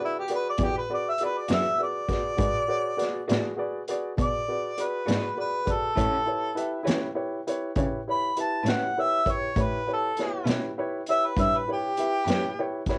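A slow blues rolling in 12/8, gritty and rollicking, heard as a short cut from a longer home cassette recording with light reverb. A mellow, jazz-style harmonica with light vibrato and scooped notes carries the solo up front from the start, over a woody upright piano that adds a fill at 12.3 seconds, a punchy vintage drum kit in a small, pumping room, and a bowed cello that enters at 0.6 seconds with a dark, floating sul tasto tone. In the background, a slightly broken-up electric guitar picked through a small old amp with tremolo joins at 1.5 seconds.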